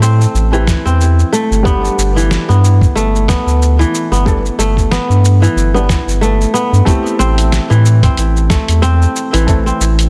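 A fingerpicked kora opens this mystical, hypnotic slice of organic downtempo, its crisp, ringing arpeggios sitting up front with a digital delay. Alongside it from the start come a round analog bass, deep and dark with sidechain pumping, and a dusty soul sampler-style kit of hi-hat, shaker and a fat, gritty snare. The groove moves at 92 BPM in 4/4 with a 56% swing on the 16ths, and the harmony in A minor shifts from Am7 to G at 1.7 seconds before returning to Am7 at 6.9 seconds. A felt-muted upright piano enters at 0.5 seconds in the background, soft and intimate with audible action noise, short sustain, sidechain pumping and its own digital delay. A compressed, thumpy electronic kick joins at 0.7 seconds, and light reverb with digital ambience surrounds a dense, heavily limited modern master in this excerpt cut from a longer piece.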